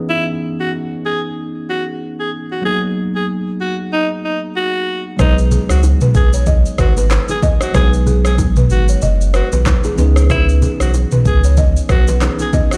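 Afrobeats with a smooth, sultry feel and a lilting swing, this excerpt opens with a bell-like tine electric piano under a phaser laying down chords while a raspy, gritty alto saxophone carries the melody through delay. At 5.2 seconds the groove fills out as an overdriven, up-front electronic drum kit with deep kick, handclaps, rim click, shaker and toms arrives alongside a round sine sub bass, a woody, buzzing balafon riff with delay, and close, dry congas and bongos in the background. The whole mix sits in a large, reverberant space, as if played over a big sound system in a bare room.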